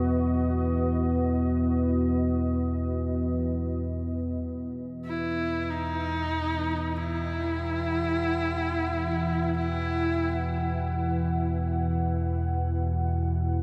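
A husky, bowed horsehead fiddle, up front with vibrato, portamento and tape echo, sings a brief melody from 5.1 to 10.8 s over a moody, detuned sawtooth pad with chorus and a sub octave and a rumbling, nasal drone, set in a huge, wet reverb that gives this cut from a longer dark ambient drone piece its ominous mood.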